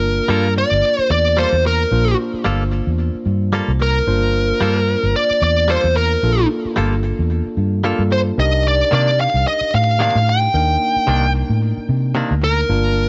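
A smooth, overdriven lead guitar sings the melody up front in this brooding, soulful swung blues excerpt, over a barky, gritty tine electric piano, a round, dark, foam-muted fingered bass and twangy, clean, direct-recorded guitar stabs with digital delay, as the harmony moves from Gm9 to Cm9 at 8.4 seconds before a clear, very quiet horn section slips in with tight sustained chords at 12.7 seconds under light reverb.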